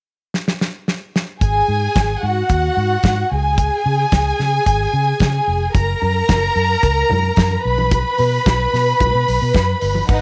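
A lush, up-front violin section with expressive vibrato plays a supporting line in this danceable, glamorous disco excerpt, entering at 1.4 seconds alongside a round, punchy, foam-muted electric bass after a drum fill opens the excerpt on a damped kit with dark cymbals and a tight kick. Chords move through G#5, C#5, F# and B5 over a straight 4/4 feel, and ringing congas join in the background at 5.7 seconds. Light reverb and a small room ambience keep the sound close.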